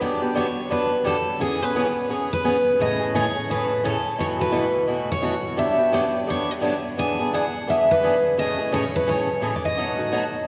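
A picked steel-string acoustic guitar carries the melody up front, its fresh strings giving a bright, full-bodied jumbo tone as it moves between G#4 and G#5. Beneath it, a picked swing-style acoustic guitar plays accompaniment from G2 to G#4, with a boxy character that sets it apart from the lead. This is playful, swinging jazz in E major at 172 BPM in 4/4, with a light swing on the eighth notes. The chords move through Gmaj7, E6, Amaj7 and B7sus4, then return to Gmaj7 and pass through E7 and Amaj7 before landing on B7 at 9.8 seconds. Both guitars sit in a church or concert hall, bathed in a wet reverb with a long 3.1-second tail, in a roughly ten-second cut from a longer piece.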